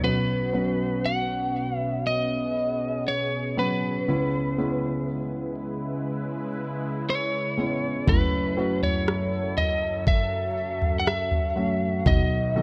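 A dark, warm production in a small room gives this hopeful, heartfelt pop ballad fragment, cut from a longer piece, a close and cozy feel. At 60 BPM in a straight 4/4, tuned to A4 = 444 Hz, a lightly driven electric lead guitar carries the melody up front, its picked, slightly broken-up tone compressed and trailed by tape echo. Beneath it, a baby grand piano with a warm character supplies the accompaniment, while a detuned sawtooth pad with a slow attack holds evolving, resonant chords shimmering with chorus. The harmony moves from Bsus2 to C#m7, then F#m7, and lands on B. At 8.1 seconds a smooth, electronic R&B drum kit enters with a knocking kick, rim clicks and toms, its produced, tape-tinged sound lifting the arrangement until it drops out at 12.3 seconds.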